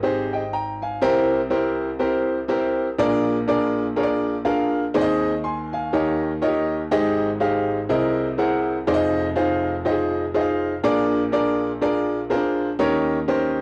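A clear, boxy grand piano plays alone from the first moment, up front with a short sustain and heard through cassette tape, carrying a reverent yet jubilant swung gospel progression from Abmaj7 through C7, Bb7 and an altered C7 to Fm7 and Eb7, set in a small-room home recording with moderate spring reverb across this 13.6-second fragment cut from a longer piece.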